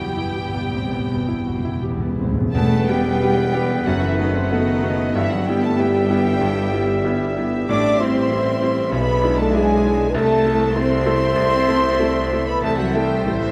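A clear concert grand piano leads this tragic, brooding romantic movement for piano and orchestra, sitting up front with a deep bass and smooth, vintage tone as it carries the melody in E minor at 95 BPM, played with rubato and uneven beats. Behind it, a lush symphonic violin section also carries the melody from a distance while a focused studio violin section adds a second line. A very quiet viola section fills in the accompaniment, mellow French horns hold sustained chords, and woody double basses join rich, distant cellos on the bass. Timpani struck with hard mallets open the excerpt with a fill and drop out at 3.5 seconds. From 2.5 seconds an airy flute ensemble and a soft-attack clarinet add second lines, while a roomy bassoon and a very quiet tuba fill out the accompaniment and bass. The harmony moves from Em through B7/F# and Am7 to Am/C, captured with close, detailed microphones and light reverb.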